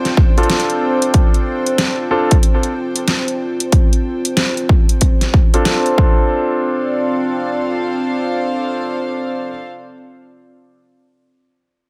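A lightly reverberant mix opens this gritty, playful glitch hop excerpt at 93 BPM in 4/4, with a swung sixteenth-note feel in D minor pentatonic over a Dm7 chord. A deep, moody analog pad sustains chords with a slow attack and long release, its detuned square and sawtooth tones colored by chorus, phaser, sidechain pumping and a vintage 12-bit sampler grit. Alongside it, a soft, sul tasto string section floats as a pumping texture, fading out over the first 6.3 seconds. An overdriven, punchy electronic kick sits up front with a dubstep kit of hi-hat and a deep snare, re-recorded in a small room, until the drums drop out at 6.1 seconds. Throughout, an intimate concert grand piano adds clear stabs with audible action noise, shaped by a low-pass filter, delay and sidechain pumping.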